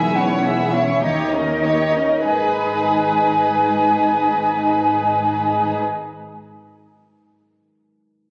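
A rubato 4/4 pulse around 100 BPM slows over the opening 2.2 seconds of this short classical passage in G# minor, tuned to A4 = 444 Hz, with a stormy, restless mood. The melody belongs to a lush, bowed symphonic violin section with smooth vibrato, while a mellow, airy silver concert flute sits up front on a second line above it, and a studio violin section plays another second line in the background. Underneath, a dark, expressive viola section fills in the accompaniment. A close cello section with a soft attack and a distant, rich double bass section carry the bass, and a bright, ringing concert harp plays fingerpicked arpeggios in the background across a broad range. The harmony moves from C#m/E to D#7 before settling on G#m at 2.2 seconds. The strings and flute stop at 5.8 seconds, leaving the harp ringing alone until 6.1 seconds, all heard through a moderate concert hall reverb on a compressed recording captured by a phone in the room.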